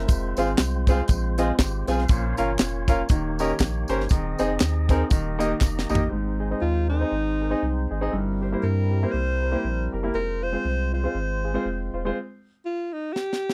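Hopeful and soulful, this uptempo gospel passage moves at 119 BPM in 4/4 with a swung eighth-note feel in Ab major, tuned slightly low. A clear, present concert grand piano and a round, deep sub bass sit up front, while a tonewheel organ holds sustained chords with a fat, lightly overdriven tone through a fast rotary speaker. A tight funk drum kit with a high-tuned snare and tight kick drives the opening half alongside tambourine and group handclaps, all dropping out after a drum fill at about 6.1 seconds. From 6.6 seconds a close-miked alto saxophone takes the melody in a jazz style, with a soft attack and vibrato. The band stops at 12.2 seconds, leaving the saxophone over a final brief drum fill, all captured in a dry, close 1970s-style studio sound.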